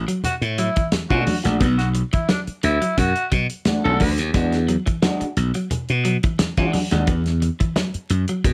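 A straight 4/4 funk groove at 88 BPM in B dorian sits on a damped 70s drum kit with tight kick and dry snare, a glassy, growly slap bass up front, and soft-handed, low-tuned congas, moving from Bm7 to E9 at 4.3 seconds in this hypnotic excerpt. A dark, clean electric guitar picks a riff, while a second guitar at the edge of break-up adds compressed, vibrato-tinged accompaniment from 1.1 to 7.1 seconds. A raspy, vintage tenor saxophone carries a second line until 4.1 seconds, all under light reverb and vinyl crackle.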